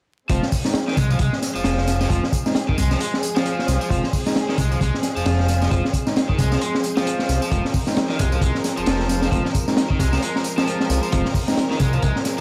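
Awash in vinyl crackle and heavy echo in a small room, this raw, funky breakbeat fragment rides a crunchy, saturated drum kit with a punchy kick and high-tuned snare under delay, a faint overdriven tambourine, a fat, detuned sawtooth bass with a moving filter sweep, a bright picked guitar riff through analog delay, lush bowed string chords pumping against a sidechain, and gritty bell-like electric piano stabs tucked in the background until 11.6 seconds.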